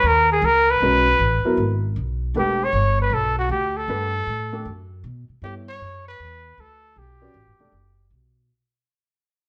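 Recorded live by the band in a stone room with moderate reverb, this short modal jazz fragment swings at 156 BPM in 4/4 with an intense, searching mood and fades out throughout, as an up-front mellow trumpet solos with scooped notes over a woody, pizzicato upright bass and a dark grand piano that enters at 0.8 seconds, the harmony shifting from G#m11 to Em11 at 2.3 seconds.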